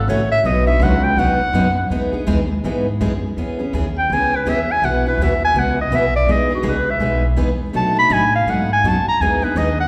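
A wet recital-hall reverb surrounds this short excerpt of lively, charming acoustic string swing in the jazz manouche style, set in a church or concert hall with a 1.5-second decay. A warm clarinet leads from the start, soloing throughout with jazz phrasing and a clear vibrato, sitting present and up front. Beneath it, an upright bass plucks gut strings with a woody, dark, thumpy tone. A picked steel-string acoustic guitar enters at 0.1 s and stops at 9.7 s, sounding bright and close, with audible finger squeak on the strings. The harmony moves through chords such as Emaj7, E6, Bsus4 and B7 across two statements of the same section, with a swung, buoyant feel.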